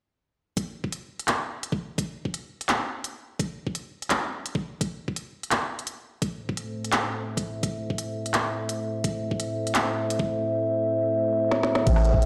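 Half-time drum and bass with a heavy, spacious mood, cut from a longer piece and built on a single minor chord. An overdriven, knocking electronic kick and a produced kit of woody snare, crisp hats, handclaps, woodblock and crash cymbal sit up front from the start, the kit carrying the roomy character of a small space. At 6.2 seconds a dark analog pad enters with moody, detuned sustained chords, its nasal square and sawtooth tones thickened by a sub octave, a slow attack, long release, chorus and sidechain pumping. A drum fill closes the opening stretch, and at 11.9 seconds a deep, saturated sub bass with a fast attack arrives just as the recording cuts off. The whole mix is bathed in a wet echo-chamber ambience and stone-room reverb, as if played through a big sound system in a bare room.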